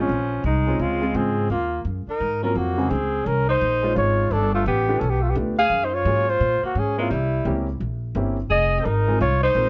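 A mellow flugelhorn carries the melody from the first moment, singing up front with light vibrato and scooped notes under a touch of plate reverb, while a clear alto saxophone traces a second line beneath it with its own vibrato and vintage jazz inflections. This short fragment of small-group swing and bop has a smoky, cool mood and a swung lilt in 4/4. A grand piano fills in the accompaniment with an intimate, natural tone, long sustain and audible action noise. The pizzicato upright bass sits up front, woody, growly and thumpy, anchoring the harmony as it moves from Bbm9 through Dbmaj9 and G9 to a closing Fm7. All four players sound together throughout the 9.7 seconds, in a lightly reverberant room with a soft, rounded top end.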